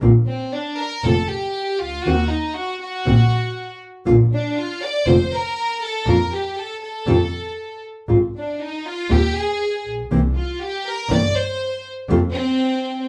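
Recorded live in one studio room with a wet reverb, this rubato tango excerpt feels dramatic and melancholic: a full-bodied, thumb-plucked nylon-string guitar and a focused, bowed double bass with vibrato support an up-front violin section, entering at 0.3 seconds with a soft-attack, floating tone, over chords moving from Bbadd9 through Ebm6 and C7 to a closing F5.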